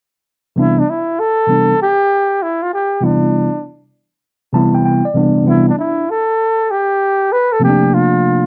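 The recording has a worn, warbling cassette-tape character, with a warbly pitch drift and a wet small-room reverb that gives it a cozy, lived-in feel. It is a relaxed, smooth hip hop piece at 98 BPM in 4/4, with a lazy 16th-note swing, in C major and tuned slightly sharp to A4 = 445 Hz. Cut from a longer piece, it opens at 0.6 seconds, where a mellow tine electric piano, clean and heard as if through its own built-in speakers, sits up front with a Cmaj9 chord. From that same moment, a solo flugelhorn plays the melody over it in a jazz style, with a soft attack, tender vibrato, scooped notes and a smooth top end, staying in a modest middle range. The electric piano adds a short fill at 4.2 seconds, and the harmony shifts to Bbmaj9 at 7.6 seconds before the fragment ends.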